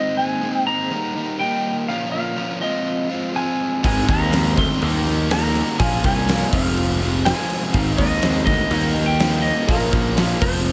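A dark, sliding clean lap steel with tape echo sings the melody over lush, very quiet string-machine chords and a background overdriven guitar riff, until at 3.8 s a shimmering twelve-string acoustic, a bright cranked stack guitar, a round fuzz bass and a huge arena drum kit with a punchy kick and fat snare crash in to drive this swaggering classic rock fragment at 123 BPM through a repeating Abadd9–Eb–Bbm–Fm progression under light reverb.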